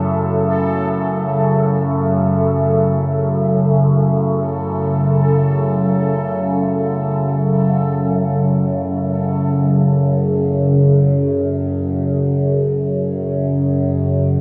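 Ominous and cavernous, this dark ambient drone sets an up-front, resonant drone with moving overtones and a phaser against a deep, moody, detuned sawtooth pad with a sub octave that sustains an F#m7 chord, while a quieter bubbling texture of random filter steps drifts through until 9.5 seconds, all bathed in a long cathedral reverb and a dark, warm production.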